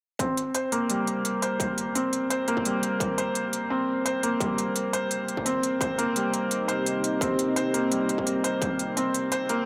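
Cinematic and tense, this half-time drum and bass excerpt moves at 171 BPM in 4/4 with a light swing, settled in C minor over a single Cm chord. A felt-muted upright piano carries arpeggios from G3 to C5 throughout, its soft, intimate tone sitting up front yet roughened by vintage 12-bit sampler grit, with a low-pass filter, delay and a filter sweep shaping it across the whole passage. Crisp electronic hi-hats and a distorted electronic kick drum share a tape-warm character and the feel of a small room, the kick trimmed by high-pass filtering and stopping at 8.7 seconds. At 6.3 seconds a dark analog pad enters with deep, moody, detuned sustained chords between C4 and Eb5, its chorus and sidechain pumping adding movement. A huge ambient reverb with a 3.8-second decay wraps the mix in a wet, spacious haze.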